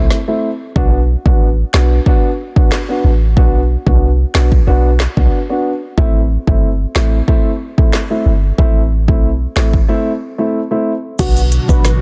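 Dancehall at 92 BPM in A dorian, this short clip cut from a longer piece feels tough and bouncy, built on a straight 4/4 groove that shifts between Am and Bm chords. An electronic, produced afro-pop drum kit sits up front with a deep kick, woody snare, crisp hats, handclaps, rim clicks and crash cymbal, beside a boomy, sine-based 808-style bass with a fast attack and a noise layer. A dark, mellow grand piano with a vintage character plays the accompaniment underneath, and a break arrives at 9.9 seconds. At 11.2 seconds a velvety synth lead carries a brief melody with chorus, vibrato and tape echo. At the same moment, an airy, breathy pad joins with warbling sustained chords that pump against the beat, and a soft, saturated tube shaker sits in the background. The sound is dry, with a dense, heavily limited modern master.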